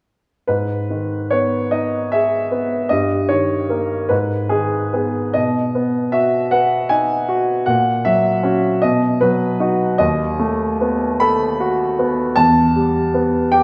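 Brooding and passionate, this romantic character piece for solo piano moves in a slow 6/8 at 51 BPM in dotted quarters, its uneven beats stretched by rubato as it unfolds in G# minor from 0.5 to 13.6 seconds. The concert grand sounds clear, open and up front, with a deep bass, spanning D#2 to B5, set in a wet recital hall reverb. Its harmony travels from G#m through D#7/G and B before settling onto a closing Em in this excerpt from a longer work.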